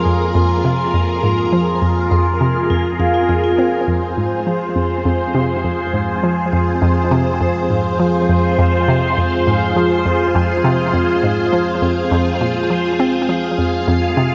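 A steady, straight 4/4 pulse at 102 BPM drives this hypnotic, cosmic slice of sequencer-driven space music in F minor, opening on an Fm chord and cut from a longer piece. A hollow, bouncy square-wave pluck carries the riff from F2 to C4, its detuned tone with a noise layer and snappy filter attack colored by chorus, phaser and tape echo. Up front, a lush vintage string machine sustains full-ensemble chords from F4 to F5 with a sub octave and moving notch, bathed in ensemble chorus and shimmer reverb. Beneath them, an analog drone holds F2 in the background, its warbling pulse-width-modulated tone evolving slowly under chorus. A bright, metallic vibraphone struck with hard mallets, motor off, spins airy arpeggios from F4 to C6 through tape echo and shimmer reverb, sounding only from 0.1 to 3.7 s, just before the second section begins at 3.9 s. The whole mix sits in a wet plate reverb with a dark top end, giving it a soft, spacious glow.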